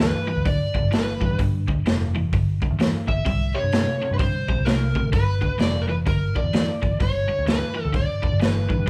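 Blues rock in a power-trio, southern rock vein, this driving, raunchy excerpt swings as the band plays live together in one room with light reverb. A dark, overdriven slide guitar carries the melody over a compressed, double-tracked electric guitar riff sitting in the background, while a round, punchy, foam-muted bass anchors the low end. Up front, a gritty, saturated garage drum kit with a boomy kick, medium-tuned snare, hi-hat and a pumping small-room sound pushes the cut along.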